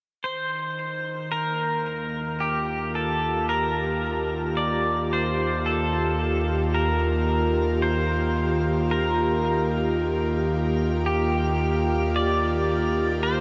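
Serene and weightless, this ambient excerpt drifts at 55 BPM in a straight 4/4, resting on a single Ebadd9 chord in E-flat Lydian. A clean, twangy pedal steel guitar carries the melody up front, played with fingerpicks and slide in volume swells, its compressed tone thickened by lush chorus and tape echo. Beneath it, a breathy, detuned pad holds sustained chords with slow attacks and long releases, its chorused tone bright and close. At 2.3 seconds a dark, wave-folded drone enters, rumbling low on a single bass note with an ominous weight and its own reverb. High above, a very quiet granular layer twinkles with an octave-up FM shimmer, and the whole mix is soaked in a huge reverb with an 8.1-second decay that gives it a dreamy, floating space.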